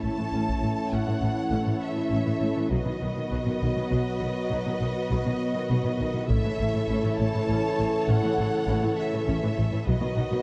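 A rich, focused violin section carries the melody high above this majestic, adventurous passage of epic orchestral film score, its bowed vibrato lush and singing in a broad, straight 12/8. Beneath it a second violin line glides with soft attack and a smooth top, while violas hold an even accompaniment in the background and cellos and double basses anchor the bass with vibrato-laden warmth, the cellos especially expressive. A dark, distant French horn section and a clear trombone section sustain chords through the texture, the horns tight and roomy in a classical style. A close taiko ensemble strikes with heavy sticks at 0.5 seconds and again from 6.3 to 7.5 seconds, adding weight to the sweep. The harmony rocks between A and B, and the whole sits in a moderate scoring-stage reverb with a dark production, cut from a longer piece.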